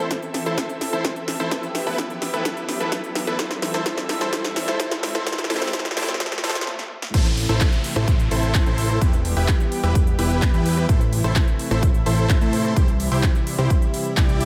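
Festival progressive house with a powerful, euphoric mood, this fragment builds through a drum fill, a filter sweep and a background riser and downlifter beneath a huge, detuned, tape-coloured supersaw riff and a lush, airy, chorused pad, both pumping against the kick, then halts briefly at 6.7 seconds before dropping at 7.1 seconds, when a fat analog bass joins the punchy, up-front electronic kick and the big-room kit's crisp hats, handclaps and snare in a dreamy, reverb-soaked mix.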